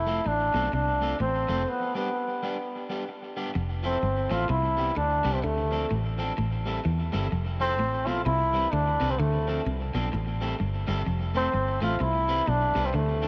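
Upbeat and joyful, this swung ska excerpt puts a bright, roomy solo trombone up front on the melody over a dark, round, foam-muted fingered electric bass. A slightly broken-up electric guitar playing accompaniment and a clean, compressed electric guitar riff sit further back, both treated with spring reverb and tape echo, inside a moderate plate-reverb space, with a break from 1.7 to 3.6 seconds before repeating major-seventh and minor-seventh changes take over.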